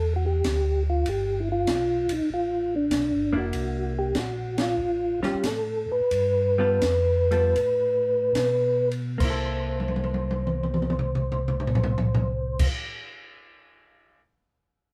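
Soul jazz organ trio in a bluesy, soulful swing, cut from a longer piece, where a soft, flute-like percussive tonewheel organ carries the melody through a slow rotary speaker with chorus vibrato over a round, dark organ bass with key click, an open acoustic drum kit with dark cymbals, a high-tuned snare and a boomy kick that takes a fill from 9.6 seconds, and a dark, compressed hollow-body electric guitar that joins at 3.3 seconds as the band slows down, hits an accent near 4.5 seconds and plays live in one room.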